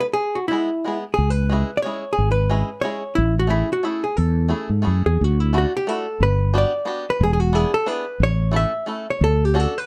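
A dark, lightly reverberant production frames this nostalgic, charming musette waltz in 3/4 at 179 BPM, with a gentle swing on the eighths as it moves from A major into D major at 5.2 s. A clean, compressed hollow-body jazz guitar carries the melody up front from the start, while a bright, twangy bluegrass banjo played with fingerpicks adds percussive accompaniment from 0.5 s. A round, mellow fretless electric bass, heard direct and amped, anchors the harmony from 1.2 s in this short cut from a longer piece.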